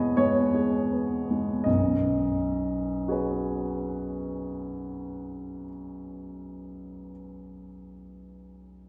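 Rubato in a slow 4/4 at 42 BPM, this serene, hazy impressionist solo piano fragment in B major eases back over its first 1.7 seconds, moving from Emaj7 to B6 at 1.7 seconds. A warm, open baby grand with long sustain ranges from B1 to D#5 and sits up front in its own tone, while the wet concert hall reverb lingers 2.1 seconds and places the listener further back in the room. Cut from a longer piece, the piano plays alone until 8.9 seconds.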